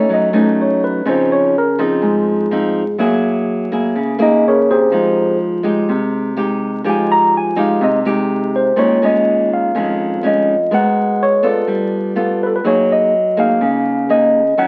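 A clean tine electric piano, heard through a combo amp, carries the melody in this wistful, intimate bossa nova fragment cut from a longer piece, taking a solo through the opening 8.8 seconds. Beneath it, a small, up-front nylon-string guitar is fingerpicked on fresh strings, giving the accompaniment an acoustic warmth that runs the full 14.7 seconds. The harmony drifts through rich extended chords such as Dbmaj9 and Fm9 before the music shifts into a second section at 8.8 seconds, moving through Bbm7 and Abm9 to settle on Gb69. A wet studio reverb surrounds the pair, and the whole recording carries the crackle and aged character of a very old 78 rpm record, lending it a nostalgic, faded glow.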